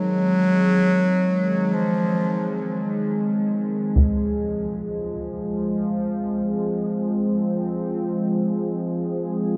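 Unfolding in free time, this dark, cavernous ambient drone excerpt opens with a close-miked bass clarinet playing a brief, classical-style solo line through analog delay until 2.8 seconds. Beneath it, a detuned sawtooth pad with a resonant sweep holds sustained chords, moving from Ab to Fm, while a vintage, warbling analog drone with chorus sustains a single mellow tone throughout. At 4.0 seconds a dry, up-front taiko ensemble strikes a brief, heavy hit muffled by a low-pass filter, and the whole mix sits in an enormous, dreamy reverb.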